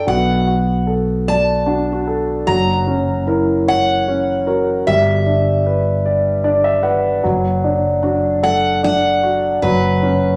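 Acoustic folk-pop ballad in a straight 6/8, reflective and heartbroken, cut from a longer piece. A picked steel-string acoustic guitar carries the melody up front, its fresh strings giving a bright dreadnought ring. A warm concert grand piano supplies the accompaniment with deep bass, sitting up front, while a felt-muted upright piano adds soft, mellow arpeggios that feel warm and intimate before falling silent at 10.0 seconds. A warm fretless electric bass sits direct and amped up front, holding the low end beneath a progression that moves from Bm7 through F#, G6 and D/F# to an unresolved F#sus4. Moderate spring reverb and studio ambience surround the parts, and the whole carries the character of a home recording on cassette.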